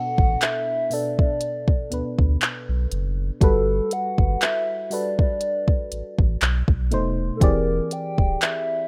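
At a slow 60 BPM in 4/4, an electronic drum kit with a soft kick, crisp hi-hats and handclaps sets a gently swung sixteenth-note feel up front, entering at 0.2 s alongside a deep, round sine sub bass. This dreamy, tender contemporary R&B fragment, cut from a longer piece, is filled out by an FM electric piano whose mellow, quickly decaying tones carry a faint noise layer. The melody comes from a hollow, woody synth lead built from square and triangle waves with a sub octave, its dark, sustained voice shimmering with chorus, tremolo, vibrato and tape echo. The harmony moves from Bm7 to Gmaj9, then tightens through B7b9 and E7alt near the close at 8.9 s. A digital ambience surrounds the rough home demo mix, giving the whole a soft, intimate glow.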